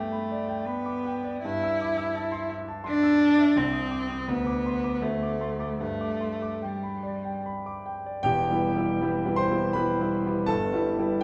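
In a flexible, rubato three-beat lilt, this serene, warm romantic duo begins with a single bowed cello and a piano together, the cello singing a smooth, even melody with rich vibrato, set a little distant yet up front. A clear concert grand piano accompanies with deep bass, long sustain and a vintage character, moving through a brief minor shading before settling back home. The cello stops at 7.4 seconds, and the piano carries on alone in the recital hall's reverb until this fragment of a longer piece ends at 11.2 seconds.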